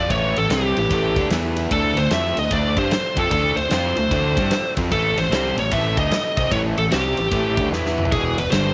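Over a swinging 4/4 shuffle, this gritty, swaggering blues rock and southern rock fragment sets a distorted, up-front lead guitar melody against a double-tracked crunchy riff guitar with spring reverb, a growly fuzz bass, a very quiet, thick organ with key click and rotary speaker, and a big acoustic kit with punchy kick, ride and toms that rolls through a drum fill at 7.7 seconds as the chords move from A7 through E5 and D7 to E7.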